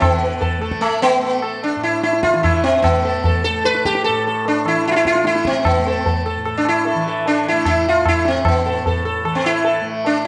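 Meditative and introspective, this brief fragment of Hindustani classical music moves at 150 BPM in a straight 7/4, with the plectrum-plucked sitar carrying the melody up front, its buzzing tone haloed by sympathetic strings. Beneath it a softly plucked tanpura holds a low, shimmering drone, while a high-tuned tabla sounds ringing yet close and dry. The performance sits in the rich reverb of a recital hall, and the overall sound contains nothing above 10.8 kHz.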